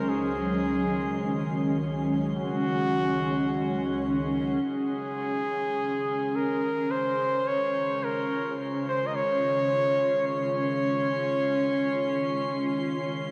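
Peaceful and serene, this free-time ambient passage in Db major is cut from a longer piece and floats in a vast, echoing space with a huge, wet reverb. A close-miked flugelhorn sits up front as the solo voice, playing a classical-style melody between Gb4 and Eb5 from 0.0 to 13.0 seconds, its tone trailed by shimmer reverb and tape echo. Beneath it, an ethereal, airy pad holds full-bodied, mellow sustained chords, thickened with ensemble chorus and shimmer reverb, and it fades in from 4.7 seconds as the harmony settles from Ab7sus4/Db onto Db. A string-like, bowed-like drone between Db3 and Db4 adds a tense, bright edge with vibrato. Far in the background, a glassy texture of drifting overtones on C6 also fades in from 4.7 seconds, its calm shimmer softened by chorus.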